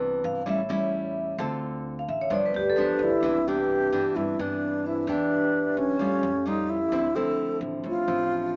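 Sophisticated and romantic, this straight-feel bossa nova at 130 BPM in C major, cut from a longer piece, opens with a dark, ringing vibraphone solo over up-front fingerpicked nylon-string guitar with audible finger squeak and a woody, thumpy pizzicato upright bass, before an airy, tongued alto flute with vibrato takes the melody at 2.8 seconds, all in a moderate studio reverb with a small-speaker sound.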